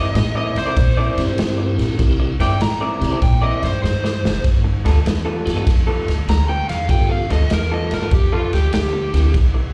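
Electric blues shuffle at 98 BPM in 4/4 with a swung feel, a rollicking, gritty clip cut from a longer piece and heard as a live club gig through the venue's PA, with small-room ambience and club reverb. An overdriven slide guitar carries the solo over a slightly broken-up, lo-fi riff guitar with slapback echo, a woody, growly upright bass played pizzicato and up front, and a punchy garage kit on kick, snare and ride that adds a fill at 3.8 seconds. From 1.2 seconds a piping tonewheel organ joins with key click, chorus vibrato and a slow rotary speaker, as the harmony moves from C9 to G9 at 4.4 seconds.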